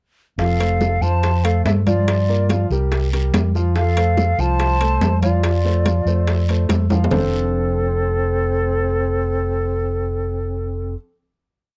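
A mellow, hollow-toned flute sings a motif-based melody up front in this danceable, sophisticated Afro-Cuban jazz piece, shadowed by an airy second flute mostly in sixths, over a warm piano montuno in octaves, a dark, round tumbao on fingered electric bass, and bright congas, low-tuned bongos, ringing metal-shell timbales and raspy guiro that stop at 7.2 seconds after a drum fill, as the rest of the dry, close-sounding band holds a final chord.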